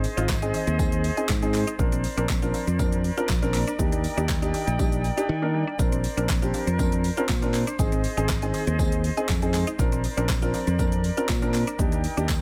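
A growly, bright fingered electric bass sits up front in this upbeat, carefree dance-pop excerpt, its notes ducking under sidechain pumping. A deep house drum kit drives a straight four-beat pulse with a punchy kick, fat snare, handclaps, hi-hat and shaker, while a jingly tambourine stays in the background. A dark, mellow baby grand piano plays accompaniment with audible action noise and short sustain, and a pure-toned flute section holds sustained chords with vibrato and rolled-off highs; both parts also pump with the sidechain. A very quiet, woody FM synth pluck with chorus adds arpeggios from 0.2 seconds. The harmony cycles through Ab, Bbadd9 and Ebmaj7 in a digital ambience, and a brief silent gap falls at 5.3 seconds before the music returns at 5.8 seconds.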